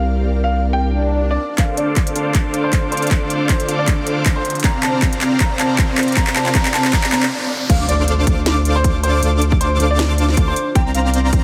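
Heavily compressed and lightly reverberant with a radio-like sheen, this dreamy, emotional future bass clip opens on a clear concert grand piano melody, pumping and filtered with digital delay, over a very quiet ethereal pad and a saturated sub bass. At 1.6 seconds a huge, detuned supersaw riff enters alongside a hard-clipped electronic kick and a trap kit of sharp snare, handclaps, crisp hi-hats and crash in a half-time build-up, while a background swell, riser and impact carry it through a brief stop into the drop at 7.7 seconds. There the sub bass returns up front, and a soft, chorused lead adds bright arpeggios with delay and sidechain pumping.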